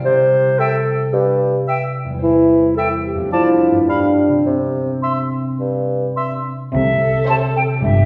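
Set in a wet recital-hall reverb, this mischievous, whimsical film cue in C major at 109 BPM opens with a dark clarinet, mellow, ringing harp arpeggios and an up-front bassoon, soon joined by a clear oboe and a pure silver flute, before bowed strings enter at 6.7 s (violas, focused double basses and cellos with portamento), with background violins briefly carrying the melody from 7.3 s.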